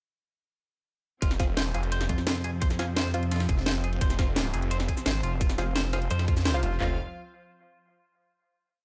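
This dark, technical drum and bass piece in F minor runs at 172 BPM with a straight, mechanical, futuristic feel, and it opens at 1.2 seconds directly into the drop. Two tight, up-front electronic kits drive it: one brings a firm kick, floor tom, cracking snare and handclaps in a broken-beat pattern with small-room ambience, while the other adds overdriven closed hats, shaker and layered snares. A gritty, very quiet sampler-style breakbeat loop with a high-tuned snare sits beneath them. The low end belongs to a snarling, detuned saw bass playing chopped, growling phrases with distortion. From 2.1 seconds a pulsing pluck wobble bass, saturated and chorused, answers it with phrases of changing wobble speed. Above, a rich bowed string section holds smooth sustained chords in the background, a bright, twangy clean electric guitar repeats a six-step picked loop that drifts against the bar, and muted, mellow dub chord stabs echo sparsely, with the strings and guitar both pumping with the sidechain before the piece settles on a final chord from 6.8 seconds.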